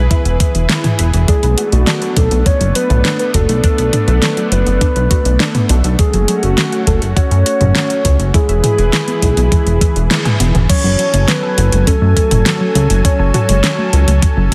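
A soft, round synth lead carries the melody from the first moment of this nocturnal, nostalgic synthwave excerpt in F# minor at 102 BPM, shimmering with chorus and digital delay over a lush, detuned unison pad whose chorused chords pump against the beat. A punchy unison pluck spins arpeggios in the background through its own delay, while a glossy, saturated synth bass sits up front with a dark, evolving pulse-wave tone. From 0.1 seconds a thumpy, sampler-style electronic kick and a layered pop drum kit drive a straight 4/4 groove, the kit bringing a fat snare, metallic hats, crash cymbal and toms. The harmony moves from E through Bm7 to F#m and back to E, until the kick drops out at 10.1 seconds for a drum fill and a band accent. The piece then settles onto F#madd9 at 10.7 seconds, all under light reverb and a dense, heavily limited modern master.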